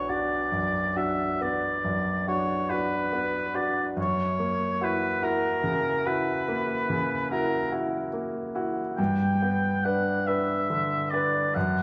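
Oboe and grand piano begin together in this solemn, elegiac romantic classical duo in B minor, cut from a longer piece and moving at a slow 47 beats per minute in a rubato 12/8. The warm oboe carries the melody up front between A#4 and G5, its soft attack and light vibrato giving the line a tender, singing quality. Beneath it, the clear, natural-sounding grand piano supplies the accompaniment across a span from B1 to B4, also placed near the listener. The harmony rests on B minor before turning to F#7 at 4.0 seconds and settling onto G at 9.0 seconds, with both instruments sounding through to 11.8 seconds. The duo is tuned slightly high at A4 = 441 Hz, a wet recital hall reverb lingers around it, and lossy compression artefacts color the sound.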